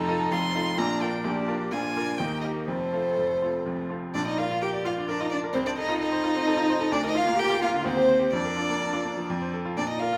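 In a straight 3/4 at 127 BPM, this lively, graceful classical-period movement for piano quartet in Bb major, cut from a longer piece, sets a bright, brilliant grand piano accompaniment up front beneath an intimate, sul tasto violin melody that enters at 0.3 s, while a rich second violin and a dark, woody cello with portamento trace lines in the background, and the sound carries the wet bloom of a recital hall.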